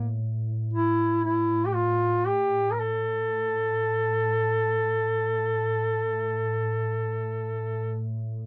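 The recording has a dry, close 1970s-style studio sound with light reverb, tuned to A4 = 444 Hz. This short excerpt of a Caucasian folk lament moves in free time, and its mood is mournful and longing. A mellow duduk carries the solo melody from 0.0 to 8.0 s, ranging from Bb3 to Bb4 in a folk style with vibrato and scooped notes, its tone distant and roomy yet placed up front. Beneath it, a glassy FM pad holds an ethereal A2 drone until 8.5 s, entering with a slow attack, sustaining, and trailing off on a long release. Ensemble chorus and built-in reverb on the pad lend the drone a soft, spacious halo beneath the duduk.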